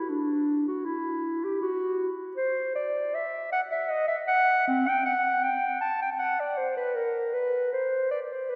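In a flexible 3/4 at 78 BPM, the pulse bends and breathes with a free rubato feel, as befits this classical, baroque-style fantasia for unaccompanied clarinet. The clarinet plays alone for the full 8.6 seconds, with a dark tone and a smooth top, moving in a classical manner between C4 and A5. Its voice sits up front, yet the whole performance is heard from further back in the room, wrapped in a wet church reverb that lingers for 3.4 seconds. The mood is radiant and serene. This brief passage is cut from a longer piece and holds to a single section throughout.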